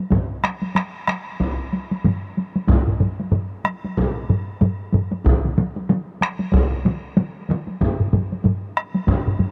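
Ceremonial and driving, this brief excerpt of Japanese traditional taiko drumming moves at 94 BPM in 4/4 with a swung sixteenth-note feel. Solo taiko drums struck with heavy sticks sit close and up front alongside three taiko ensemble parts played with hard sticks, one close and dry, one in a small room, and one distant in a large room. All four begin together, and the small-room ensemble part stops at 7.7 seconds while the others carry on to the close, and the overall sound carries little reverb.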